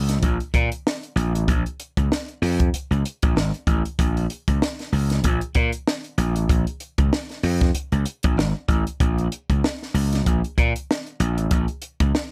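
A gritty, growly slap bass opens this cool, driving funk excerpt at 96 BPM with a light sixteenth-note swing, its bright, overdriven tone sitting up front in the low register, while a compact cocktail drum kit with a punchy kick, high-tuned snare and hi-hat joins in a dry, close-sounding room.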